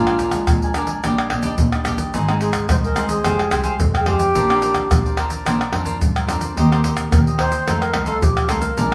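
An airy, hollow silver concert flute with a straight tone carries the melody in this festive, playful samba-and-choro excerpt in Eb major at 109 BPM, over bright picked cavaquinho, a small fingerpicked nylon-string guitar, a distant bowed double bass with vibrato, and close, dry egg shaker, pandeiro, tamborim and tight surdo played up front with soft hands, all heard as a band playing live in a small room.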